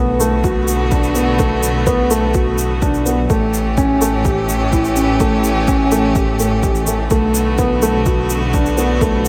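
Moving and cinematic, this piano and strings electronica excerpt from a longer piece centers on a riff from a felt-muted upright piano, mellow and intimate, placed up front with tape echo. Around it, a focused string quartet, one player per line, holds bowed chords with vibrato that pump against the beat, while a deep, rumbling detuned saw bass with tube saturation pumps in the same way. A shaker joins at 0.2 seconds and a punchy electronic kick at 0.4 seconds, both layered and re-recorded in a small room, all within a light reverb.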